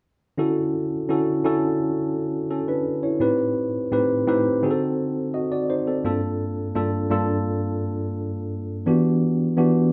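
A worn, slightly out-of-tune tine electric piano enters at 0.4 s and carries this smooth soul fragment as accompaniment in straight 4/4, sitting mellow and up front in the mix. Its clean, direct tone moves through rich jazz-inflected harmony, from Dmaj9 through Am7b5, D7b9 and Gm9 before settling on Em9 at 8.9 s. A short, wet studio ambience surrounds the instrument, giving the cut from a longer piece the warm feel of a band playing live in one room.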